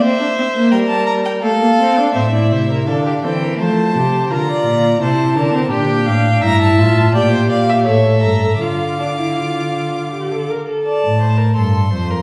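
Heard from further back in a wet recital hall, this solemn, driving baroque-style fugue for string quartet moves at 84 BPM in 3/4, settling into D minor from 6.4 s in a fragment cut from a longer piece. A single bowed violin carries the melody with soft-attacked, expressive vibrato and portamento, while a second violin traces a smooth, even line beneath it and an up-front viola adds rich accompaniment with its own vibrato and slides until 10.9 s. The cello enters on the bass at 2.1 s, sitting up front with vibrato and gliding portamento.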